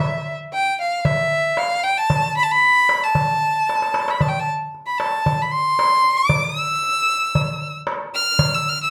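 A moderate studio reverb surrounds this soulful, hypnotic Arabic maqam ensemble passage in a straight 4/4, where a single bowed violin carries the melody up front with a rich, smooth, even vibrato tone between E5 and F6, while a crisp, high, metal-shell darbuka enters at 0.5 s in a large-room ambience and plays a fill at 3.7 s.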